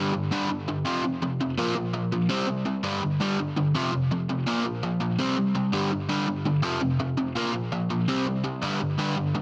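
An overdriven electric guitar, dark, double-tracked and up front with tape echo, plays alone for the full 9.4 seconds of this rebellious, energetic punk excerpt at 166 BPM in a straight 4/4, cycling through G5, F5, Bb5 and C5 power chords in a light reverb under a dense, heavily limited modern master.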